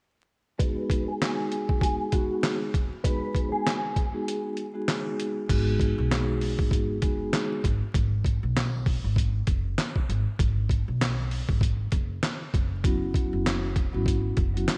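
Moody and gritty, this swung 98 BPM boom-bap hip-hop excerpt in G# minor opens under a filter sweep as a dark, clean electric guitar melody and a mellow, ringing soft-mallet vibraphone rest over a compressed, pitched-down sampler-style drum kit with thumpy kick, handclaps, hi-hat and crash. After a break at 4.3 seconds, a woody pizzicato upright bass enters at 5.5 seconds, set against vinyl crackle and light reverb.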